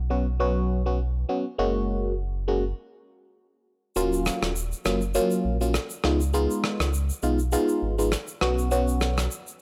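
Mellow and hypnotic, this excerpt of an afrobeats groove in Eb minor moves at 101 BPM with a gentle 16th-note swing, as a deep, sine-and-triangle sub bass with an octave layer sits up front beside a biting, barking FM electric piano whose percussive, full-bodied attack carries a noise layer and a phaser. After a stop at 2.8 seconds, an acoustic shaker and rim click played with brushes enter at 4.0 seconds, while the chords move from Bsus2 and Gbadd9 through Ebm7 and Db7 before returning to Bsus2. The dry, gritty hardware sound sits in a small room ambience.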